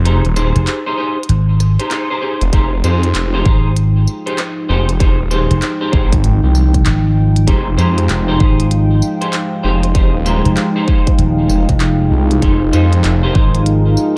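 Swaggering and gritty, this glitch hop excerpt opens with a break in which a swirling, saturated, detuned saw bass with phaser and a bright, amped slap bass sit up front. Around them, clean semi-hollow electric guitar stabs carry chorus, delay and sidechain pumping, and a glitchy drum kit adds clicky hats, handclaps, rim clicks and tambourine over a swung sixteenth feel on a lingering Fm9 chord. A punchy, layered electronic kick arrives at 2.5 s, a nostalgic, lo-fi, warbling tape-like pad follows at 3.0 s, and a deep, dark ambient pad slips into the background at 4.2 s, both pads carrying sidechain pumping in a dreamy mix steeped in plate reverb.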